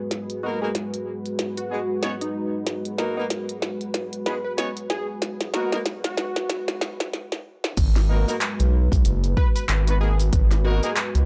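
The groove sits at 94 BPM in 4/4 with a 58% swing on the sixteenths, giving this gritty, funky glitch hop cut in G# minor a loose, head-nodding lilt over a single G#m7 chord. A deep, moody analog pad of detuned sawtooth and triangle with a sub octave holds sustained chords under chorus and sidechain pumping, while a glitchy, overdriven drum kit sits up front with a tiny snare, clicky hats, handclaps and crash cymbal, sounding re-recorded in a small room. A catchy, plucky unison lead carries the melody with subtle chorus and analog delay, and a jazz-style horn section with light vibrato and octave doubling punches out stabs, also pumping and echoing. The opening build-up runs through drum fills and a filter sweep to a brief break at 7.1 seconds, and at 7.8 seconds the drop lands as a punchy, tape-warm layered kick, a saturated, aggressive synth bass with oscillator sync, and a grainy cabasa in the background all enter. 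The whole is a dry, gritty hardware-style recording with digital ambience and a high-pass filter, cut from a longer piece.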